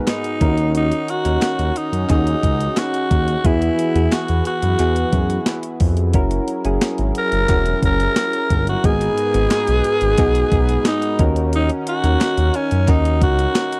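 1980s-style pop with a nostalgic, urgent mood, where a growling, raspy alto saxophone carries the melody up front over a clean 12-bit drum machine with a thumpy kick, a smooth synth bass, soft, round electric-piano-like synth keys with chorus, a shimmering pulse-width pad in the background and a very quiet, hollow group handclap, all moving through D#m7, Eadd9, F#7 and G#m7 in a dry, close studio sound with light reverb.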